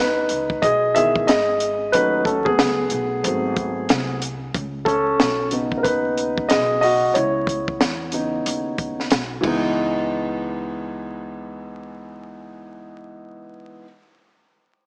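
A dark, mellow baby grand piano opens this smoky, nocturnal jazz-hop excerpt at 92 BPM in C# minor, sitting up front with long sustain over a swung groove as it moves from C#m9 through D#m7b5 and G#7b9 back to C#m9. A woody, thumpy pizzicato upright bass on gut strings holds the low end throughout, while a compact cocktail drum kit with a punchy kick, high-tuned snare and dry, dark cymbals plays until 9.6 seconds. An echo chamber reverb, vinyl crackle and a small speaker sound give it a dusty, late-night haze.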